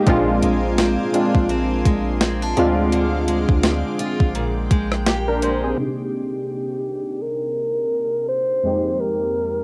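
A swung 16th-note groove at 84 BPM in 4/4 comes from an overdriven, sampler-style 12-bit drum machine with a thumpy kick, medium-tuned snare, rim click and hi-hat, over a deep, sine-toned 808-style bass in this moody, late-night contemporary R&B fragment in C minor. Round, detuned analog keys with a sub octave and filter sweep carry the accompaniment throughout, joined by a lush, thick unison pad and a bright, picked steel-string acoustic guitar with audible finger squeak and analog delay, moving through Bb9 and Bb13 chords. By 5.8 seconds the beat, bass and pad have fallen away, the guitar following shortly after, and a breathy alto saxophone with jazz-style vibrato takes a smooth solo over Cm9 and Fm11, the whole piece carrying a light reverb and the softened character of a home cassette recording.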